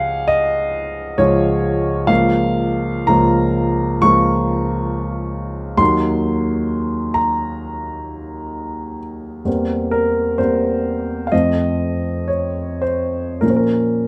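A grand piano plays alone from the opening, a wistful, melancholic romantic nocturne in B-flat minor, moving in a slow, rubato 4/4 at roughly 50-69 BPM across a range from Db2 to Db6. Its harmony drifts from Db through Ebm, C7/E and F7 before settling on Bbm at 13.4 seconds. The piano sits up front with a warm, intimate, natural tone, long sustain and audible action noise, all framed by light reverb, and the passage is cut from a longer piece.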